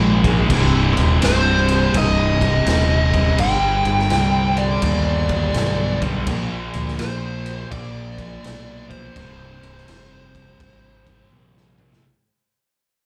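This live club recording has the reverberant feel of a small venue heard through its PA, and the whole 12-second excerpt fades out from its opening. It is a brooding, ominous slice of stoner and doom metal in C minor, moving at a slow 83 BPM in 4/4 with a swing on the eighth notes, and the chords move from an Ab power chord through Cm, G and Bb before settling on a C power chord. An up-front, fingered electric bass growls with bright overdrive beneath three picked, distorted rhythm guitars playing the riff: one fuzz guitar carries a slapback echo, a thick, dark fuzz guitar sits in the background beside it, and a very quiet, double-tracked sludgy guitar adds an overdriven layer. A raw garage drum kit comes in at 0.2 seconds with a boomy kick, a medium-tuned snare, toms and dark crash cymbals, its saturated, rolled-off sound pumping with the room. At 1.2 seconds a compressed fuzz lead guitar steps forward with a high, wah-soaked melody, its warm tone trailed by slapback echo and digital delay. 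The drums close the excerpt with a fill at 11.3 seconds.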